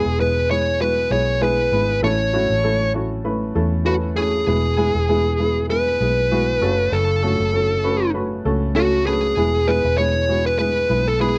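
A 98 BPM pop groove in 4/4 with a light swing on the sixteenths carries this hopeful, warm fragment in E major, moving through E, A and F#m before settling back on E at 9.4 seconds. Up front, a fuzz-distorted, picked lead guitar sings the melody in a narrow upper range, while a worn, woody, slightly detuned upright piano with a boxy, short-sustained tone supplies mellow accompaniment. Underneath, a vintage foam-muted fingered electric bass adds a round, punchy low end, all in a dry, close sound with little reverb.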